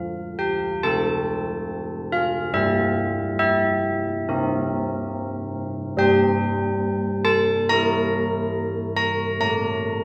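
Old church bells ring alone through this short, wintry passage of classical music, their bronze tone clangorous with a minor-third overtone, the iron clapper audible and the beating of the partials clear, close and up front in a boxy small-room sound. A wet recital-hall reverb surrounds them, lending the solemn tune its lingering ring. The harmony moves from F through C7/G and Edim/G before reaching A at 9.4 seconds, shortly before the fragment breaks off from the longer piece at 10 seconds.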